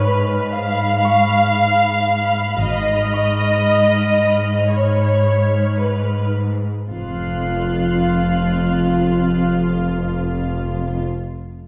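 Heard through the wet reverb of a scoring stage, this slow cinematic suspense cue, cut from a longer piece, sits at 56 BPM in F minor and feels mysterious and uneasy. Con sordino violins carry a veiled, vibrato-laden melody up front over dark bowed cellos, while a second, higher violin section adds smooth-topped texture and a thumb-plucked concert harp rings in the background until 7.0 seconds. Muted double basses join the low end at 2.6 seconds, and the harmony shifts from A-flat minor to an F5 chord at 6.9 seconds.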